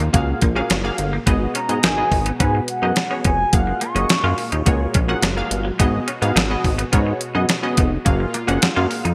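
A straight 4/4 groove at 106 BPM drives this late-night, funky cut of early-eighties boogie funk in G# dorian, built on an up-front 12-bit drum machine with a thumpy kick, a fat snare and gated reverb, plus a glossy, chorused synth bass over chords moving between F#maj9 and G#m7. A punchy, detuned polysynth comp with chorus and a twangy clean electric guitar riff with lush chorus fill out the middle, the guitar sitting in the background, while a very quiet brassy analog pad holds sustained chords underneath. From 1.6 to 4.7 seconds a round, horn-like synth lead with vibrato, chorus and delay carries the melody, framed by a bright 1980s-style digital production with light reverb.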